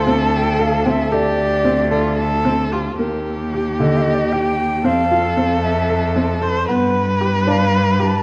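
This contemporary chamber piece in 7/8 moves at 228 BPM counted in eighths, with a straight, hypnotic and pensive feel, and it is cut from a longer work. A wooden flute carries the melody with an airy, slightly unsteady tone, a crisp attack and vibrato, while a single bowed erhu sings a second line just beneath it, boxy and up front, gliding between notes with portamento. A bowed cello anchors the low end with a focused, vibrato-rich bass, and a felt-muted upright piano enters at 0.1 seconds with mellow, intimate arpeggios whose short sustain lends a vintage softness. The harmony opens on Dm7, then shifts at 3.0 seconds into a new passage that climbs through Ebmaj7 and Fmaj7 before settling on G7. A moderate scoring-stage reverb and a dark, warm production wrap the ensemble in a shared, enveloping space.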